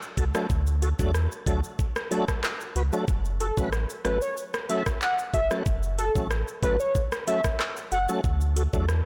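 A straight 4/4 dancehall groove at 93 BPM drives this short, tough and bouncy excerpt in F# minor, built on an electronic island pop drum kit whose knocking kick, metallic hi-hats, rim clicks, handclaps and shaker sit up front, with the kit sounding re-recorded in a large room. A deep, round sine sub bass, sustained and mellow with a fast attack, holds the low end from 0.2 seconds, moving between F#1 and E2. A full, lightly overdriven tonewheel organ supplies the accompaniment through chorus vibrato and a slow rotary speaker, filling the range from F#3 to B4. At 3.4 seconds a velvety, smooth synth lead enters, its detuned unison sawtooth and triangle tones given chorus and vibrato, carrying the melody between A4 and F#5 until 8.1 seconds. The harmony moves from D to F#m at 3.1 seconds and back to D near the end, all under light reverb in a blown-out, overdriven recording.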